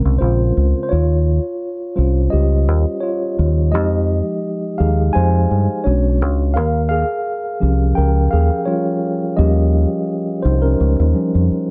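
A mellow, clean tine electric piano takes a solo from 0.9 seconds over a dark, round fingered electric bass that sits up front in this late-night, introspective neo-soul and R&B passage at 85 BPM in 4/4 with a light sixteenth-note swing, moving through chords such as Bbm9, Eb13 and Fm9 in a dry, close 1970s-style studio sound tuned to A4 = 441 Hz.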